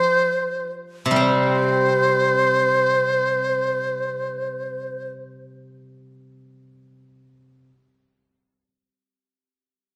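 A large bamboo dizi leads up front with a buzzing, airy tone, tongued notes and vibrato, carrying a graceful, festive melody in free time from 0.0 to 5.1 seconds. Beneath it, a steel-string zither played with fingerpicks sounds silvery and ringing as it accompanies in the low register and holds on alone until 7.7 seconds. This brief cut from a longer Chinese chamber piece, tuned to A4 = 439 Hz, slows down over its opening 1.2 seconds and sits in a wet recital hall reverb.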